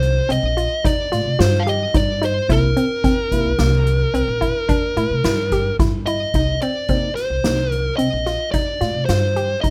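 A dark, fuzz-drenched lead guitar carries the melody up front from the start, over a hollow, bouncy square-wave pluck whose arpeggios shimmer with chorus and phaser, a woody, growly upright bass and a soft-mallet kit with a boomy kick, setting a tense, brooding progressive groove in 7/4 at 109 BPM. A clean, warm tine electric piano adds accompaniment from 2.5 to 7.6 seconds as the harmony moves from C minor seventh to C dominant seventh, before the minor chord returns with a new section at 6.3 seconds. The short passage, cut from a longer piece, has light reverb and the rough feel of a home demo mix.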